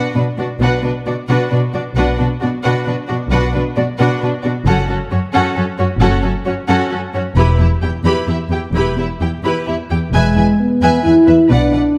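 This cinematic cue moves at 132 BPM in a straight 3/4, set in B minor, and carries a dramatic, epic mood as a cut from a longer piece. A bowed string body opens at once: violins on a lush second line, a clear, intense viola section filling the accompaniment, and cellos sitting up front with a smooth vibrato on the bass, joined at 0.6 s by a rich double bass section with light vibrato beneath them. Over the first 10.1 s the passage builds, with the harmony shifting from Bm through F#m to Em. At 10.1 s the chord turns to E major, a second violin section takes the melody high in its range, and a dark French horn section enters up front with soft-attacked sustained chords. A wet recital-hall reverb surrounds the ensemble, giving the strings a broad, symphonic bloom.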